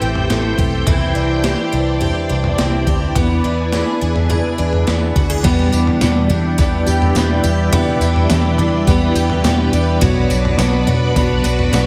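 Bathed in a moderate recital-hall reverb, this ethereal, haunting dream pop excerpt sets a shimmering, octave-doubled twelve-string acoustic guitar's picked arpeggios, with chorus and delay, over a lush string machine with slow-attack sawtooth chords, phaser and ensemble chorus, a round, foam-muted fingered bass, and a gated 80s drum machine with a thumpy kick, overdrive and a gated-reverb snare, before a dark, clean semi-hollow electric guitar with tremolo and analog chorus slips into the background at 5.4 seconds.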